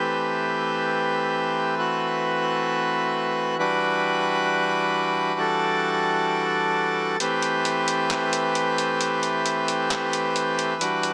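An accordion opens this hazy, melancholic excerpt of atmospheric cloud-rap, holding reedy, hollow sustained chords up front in A dorian as the harmony moves from Am9 to Em9 and back at 133 BPM in a half-time 4/4 feel. At 7.2 seconds a gritty, pitched-down sampler-style drum kit enters with handclaps and hi-hat, its compressed, tape-warm sound sitting well beneath the accordion while the kick stays muted. A small room's light reverb surrounds the parts, and the master is dense and heavily limited.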